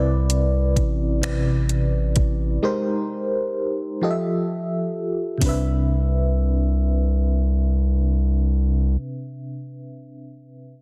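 Light reverb and digital ambience surround a dense, heavily limited modern mix in this slow six-eight R&B excerpt, which moves at 43 BPM in C major with a warm, intimate mood. A mellow FM electric piano carries the accompaniment, its warbling tremolo, phaser and faint noise layer giving the vintage chords a shimmering, decaying bloom across Cmaj9, Abmaj9 and Fmaj9 before settling back on Cmaj9. Beneath it, a round analog bass mixes square and sine tones with a quick filter pluck, sitting deep and dark up front in the low register. A soft, electronic R&B kit of finger snaps, tape-toned hi-hat and a gentle kick joins almost at once and drops out at 5.6 seconds. The bass holds on until 9.0 seconds, leaving the electric piano to ring out alone until 10.7 seconds.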